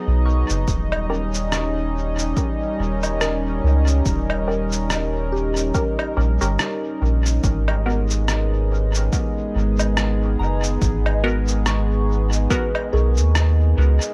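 A dry, echo-heavy mix sets a meditative, spacious mood in this ambient dub fragment, cut from a longer piece and moving at 71 BPM in 4/4 with a swung sixteenth-note feel in G# minor. A smooth, sawtooth-edged analog pad holds sustained chords with chorus and a slow attack, while a deep, round sub bass sits up front from 0.1 seconds. A pure FM bell plays soft arpeggios in the background, coloured by chorus, phaser and dub echo. Sampler-style shaker, woodblock and rim click, muffled and pitched down, arrive at 0.5 seconds with overdrive and dub echo, joined by a punchy, overdriven electronic kick that drops out at 12.7 seconds. A muted, detuned chord stab with a filter pluck and phaser adds echoing accents over a harmony that moves from G#m7 to D#7 and returns to G#m7 at 7.4 seconds.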